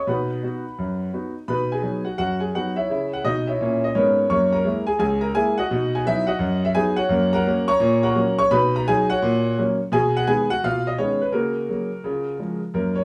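A boxy, intimate grand piano sits up front from the first moment, playing this playful stride jazz alone at a brisk 171 BPM with a buoyant swing feel in B major, its action noise plainly audible. Chords such as C#m13 and F#9 give the harmony a rich colour before the music moves into F# major at 7.1 s. A moderate studio reverb and small-room ambience surround the piano in this short fragment cut from a longer piece.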